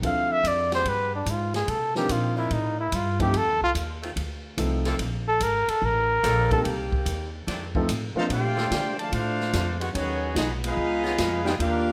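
Heard in a large studio with moderate reverb, this joyful big band swing excerpt at 145 BPM in Bb major opens with a breathy solo trumpet playing scooped notes over intimate baby grand piano with audible action noise, thumpy pizzicato upright bass, a drum kit with a punchy kick and ride cymbal, and edgy close-miked saxophone chords, until at 8.2 s a clear, tight trumpet section and a mellow trombone section enter with the melody and a second line as the piano stops at 8.3 s.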